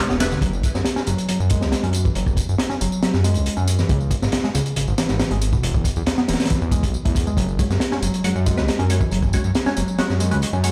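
A round, dark picked electric bass riff with dub echo opens this swaggering, raw breakbeat excerpt at 138 BPM, joined almost at once by a fat, detuned sawtooth analog bass and a crunchy, gritty drum kit with a punchy kick, high-tuned snare and rolled-off top, both placed up front. A tape-warm electronic tambourine and ride cymbal sit low beneath them, while a muted, full-bodied chord stab with phaser, lush chorus, cassette-tape colour and dub echo flickers briefly at 0.2 seconds and returns from 7.6 seconds; meanwhile the harmony moves through F#sus2, C#m and E5 before coming back to F#sus2. The whole piece sounds as if played on a big sound system in a bare room, wrapped in large studio reverb.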